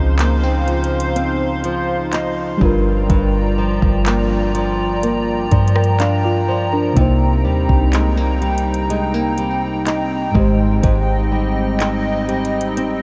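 A dark, round FM electric piano with chorus, a hollow, flute-like pad with chorus, a small fingerpicked nylon-string guitar arpeggiating through delay and a deep, sine-like 808-style bass open this longing, moody contemporary R&B excerpt in C minor at 62 BPM, before a produced drum kit of soft kick, metallic hi-hats, handclaps and rim clicks with vintage 12-bit sampler grit joins at 0.2 seconds, all moving through Dbmaj9, Gm7, Cm7 and Abmaj7 in a dreamy mix soaked in a huge ambient reverb.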